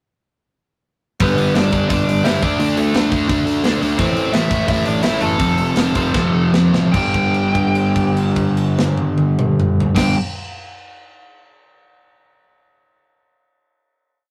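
Punk rock piece, upbeat and energetic in straight 4/4 at 146-173 BPM, where crunchy, double-tracked overdriven guitar drives eighth-note power chords up front over a growly fuzz bass in the background and a tight metal drum kit with a punk fast groove, while a dark, smooth overdriven lead guitar plays a motif-based melody partly doubled in octaves, all moving through G, D5, Am and F before slowing down from 4.0 seconds, hitting a drum fill at 6.1 seconds and ending on a held G5 chord from 6.9 seconds, captured as a rough rehearsal-room recording with light reverb.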